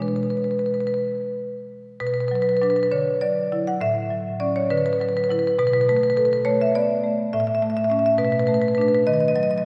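A solo marimba played with medium hard mallets on padauk bars rings out woody and up front in this brief, hypnotic and reflective contemporary classical fragment cut from a longer piece, its rubato 6/8 lines ranging from A2 to F#5 and drifting through minor and added-tone harmonies like Bm6, Dadd9 and D69 before landing on D#m at 9.1 seconds, all bathed in a wet concert-hall reverb heard from further back in the room.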